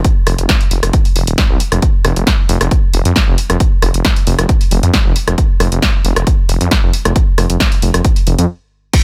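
A thick, menacing detuned saw bass with a saturated, beating tone and sidechain pumping drives this hypnotic, industrial peak-time techno at 135 BPM, sitting up front beside a heavy, tape-warm electronic kick drum and a punchy techno drum kit of crash cymbal, hi-hat, rim click and snare, both re-recorded in a small room with little reverb and a faint mains hum, until a stop at 8.5 seconds cuts off this fragment of a longer piece.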